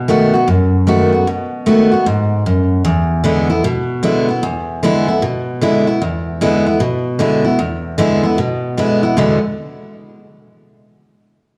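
Retro and rollicking, this short rock excerpt at 152 BPM swings its eighth notes in E mixolydian as a lone picked steel-string acoustic guitar, full-bodied and up front with the warm tone of fresh strings, plays solo from 0.0 to 9.4 seconds across a range from E2 to F#4, moving from B7 to E7 at 2.9 seconds, all carried through a club PA with light reverb and small-room ambience that gives it the feel of a live gig.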